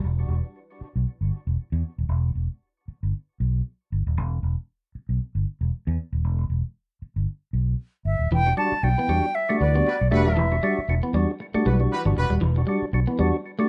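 Funk with a cool, sly mood and a swung sixteenth-note feel, this short cut from a longer piece opens with a growly, amped fingered electric bass playing alone and up front over an E minor groove. At 8.1 seconds a pure, straight-toned concert flute enters, tongued and forward in the mix, carrying a brief melody in its upper register. Moments later, at 8.3 seconds, the harmony shifts to Em9 as a clean, picked electric guitar riff, bathed in spring reverb, arrives alongside a fat, percussive tonewheel organ playing stabs with light overdrive, vibrato, a slow rotary speaker and tape echo. At 9.6 seconds a mellow, distant horn section adds a roomy second line with light vibrato in an ensemble pop style. The whole thing sits in a small room with a rough, home-demo character and a dull, rolled-off top end.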